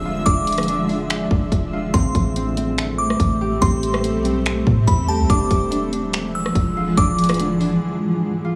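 Atmospheric cloud-rap hip hop in A minor at 143 BPM with a half-time feel, this hazy, ethereal excerpt drifts between E7b9 and Am7 over a blurred, detuned granular pad that pumps against the beat and sits up front. A glassy FM synth bell carries the melody through chorus and tape echo, a fingerpicked Celtic harp rings out arpeggios, and a soft, round 808-style bass anchors the low end. A trap drum kit enters at 0.3 s with a hard-clipped kick, bright hats, finger snaps and rim clicks, its overdrive pushing it forward, and the drums and bass fall away by 7.8 s for a short break, leaving the pad and harp to linger in a small digital room.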